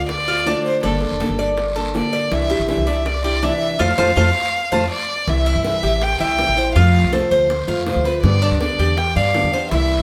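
A bowed violin, nylon-string guitar, Cuban tres and upright bass start together in this warm, relaxed passage of Cuban son and guajira, cut from a longer piece, with bongos and guiro joining a moment later. Up front, the single violin carries the melody with a soft attack, light vibrato and an airy, intimate sul tasto tone, while the pizzicato bass sits just as close, woody and thumpy from its steel strings. The tres picks bright, metallic arpeggios on its doubled strings, some sounding in octaves, as the small fingerpicked guitar fills in the accompaniment beneath. Tight, high-tuned bongos struck with hard hands and a raspy guiro stay in the background. From 3.8 to 5.3 seconds a drum fill and a band accent mark the turn into a new section. The whole group plays live in one stone room whose moderate reverb lends a gentle, natural glow.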